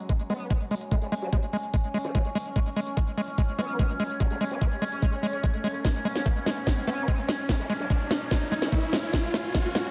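Lightly reverberant and digitally ambient, this hypnotic psychedelic trance build-up sets an up-front knocking electronic kick and a tape-warm techno kit of cracking snare and smooth hi-hats against a squelchy, gritty acid bass riff with sidechain pumping and digital delay, a nasal vowel-sweep wobble bass in the background, and a detuned sawtooth drone whose overtones shift under chorus and reverb, while a riser enters at 1.7 seconds and a drum fill begins at 5.8 seconds.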